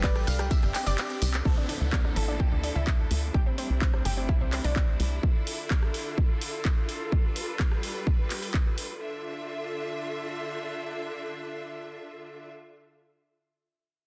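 A straight pulse drives this emotional, bittersweet progressive house passage, cut from a longer piece, with a punchy, tape-warm electronic kick sitting up front and a layered house kit of handclaps, hi-hat, ride cymbal, rim click and tambourine, both carrying the grit of a small room. Around 1.0 seconds the kick drops out for a brief drum fill, and the drums carry on until about 8.9 seconds, after which the clear, focused studio string section holds its bowed, vibrato-rich chords alone until 12.5 seconds. Beneath the opening, a tight, dark sequencer bass built from sawtooth, square and triangle tones gives a driving, fast-decaying push, while a round analog pluck spins bright, detuned arpeggios through chorus and tape echo. A lush unison pluck with a noise layer briefly sketches a melody in the background at the very start, and an electronic downlifter sinks quietly underneath as the harmony moves between Dmadd9, C6 and G7. 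The strings, plucks and bass pump under sidechain compression, set in light digital ambience within a dense, heavily limited modern master.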